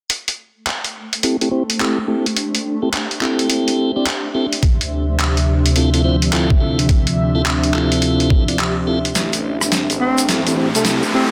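A gritty, pitched-down boom bap drum kit leads this playful glitch hop excerpt at 106 BPM in A minor, its handclaps, filtered hi-hat, rim click and soft-clipped, medium-tuned snare sitting up front with a tape-warm, compressed sampler character and a swung sixteenth feel. A cloudy, blurred granular pad drifts in behind it, and a piping, clean tonewheel organ with key click and a stopped rotary speaker adds stabs under a filter sweep and tape echo, both pumping against the beat. At 4.6 seconds the harmony moves from Am7 to Dm9 as a smooth, chorused analog pad arrives with sustained chords and a thumpy electronic kick drum sits up front until 8.4 seconds. The build-up begins at 9.2 seconds with a drum fill, a return to Am7, a grainy, close tube shaker and a swirling, thick phased saw bass with overdrive, while an electronic riser climbs in the background. A dark, breathy tenor saxophone then enters with a whispered, intimate jazz-style solo, its vibrato and scooped notes roughened by vintage 12-bit sampler grit. 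The mix carries light digital ambience and a dense, heavily limited modern master.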